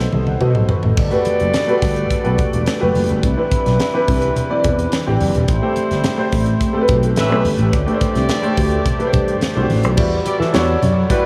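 A drum fill and a grand piano fill open this nocturnal, bittersweet cut from a polished 1980s jazz-funk pop piece, with the fretless electric bass sustaining beneath them. At 107 BPM in a straight 4/4, the intimate, up-front concert grand carries the accompaniment through a lush chorus, its action noise audible and its low end deep. The bass sounds growly and direct, colored by analog chorus, while the crisp fusion kit pairs a punchy kick with a high-tuned snare, hi-hat, toms and crash in an airy studio room. From 1.0 s a mellow, distant horn section adds a tight second line, and very quiet congas with bright, thin skins sit close and dry under soft hands. The harmony moves from B7b9 through Gmaj9, Cmaj9, Am9 and A9 to a D7sus4, then settles on Em9 as a new section begins at 10.0 s. A huge ambient reverb with a 7.9-second tail soaks the dreamy mix.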